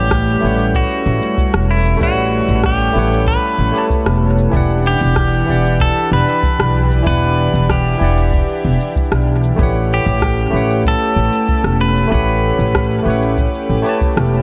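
Sunset chillout in a smooth, warm mood, this excerpt drifts over A13 and Em9 chords, with a clean, compressed pedal steel guitar carrying the melody through analog delay while a barky, bright tine electric piano, also delayed, supplies the accompaniment. A lush, detuned unison pad with chorus holds sustained chords, and a woody, thumpy pizzicato upright bass sits up front. A deep, tape-warm electronic kick drum re-recorded in a large room plays alongside an overdriven, layered rim click and cabasa treated with tape echo, all within a lightly reverberant, echo-heavy mix.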